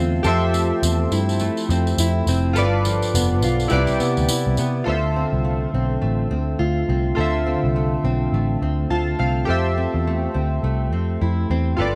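The recording is dry and close, with little reverb, giving this hazy, lonely slice of indie bedroom pop an intimate, in-the-room feel. At 104 BPM in 4/4 with a gentle 16th-note swing, it sits in D dorian, moving through chords like Fmaj7, G7, Cmaj7 and a long stretch on Dm7. A fingerpicked, plugged-in steel-string acoustic guitar with a full-bodied jumbo tone runs throughout, coloured by lush chorus and vibrato. Underneath, a vintage muted electric bass plays a dark, round, foam-muted line that sits up front, while chorused retro synth keys add a glossy, detuned blend of pulse and sawtooth tones with a filter sweep and a cassette-tape character. A jingly tambourine taps along close by from 0.2 to 4.7 s, and the synth keys break into a short fill at 8.6 s before the harmony returns to Fmaj7.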